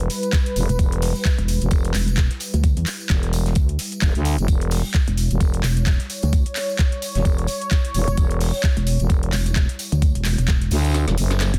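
A 4/4 groove at 130 BPM, swung at 57% on the sixteenths, drives this bouncy, gritty bass house piece in E dorian, cut from a longer track and resting on E minor throughout. An overdriven, knocking electronic kick sits up front from 0.3 s and drops out at 10.9 s, when a drum fill takes over. It is layered with a garage drum kit of handclaps, a woody snare and metallic hi-hats, also overdriven. Behind these sit a fat-snared soul kit with high-passed hats and a jingly, very quiet tambourine played close and dry. The low end pairs a growling, thick FM bass with a dark, detuned wobble bass that pulses in at 0.7 s, both tube-saturated and pumping against the kick. Above them, an airy, evolving sawtooth pad with a noise layer, chorus and a slow attack holds sustained chords in a bright haze. The pad pumps too, in a small room, and the master is dense and heavily limited.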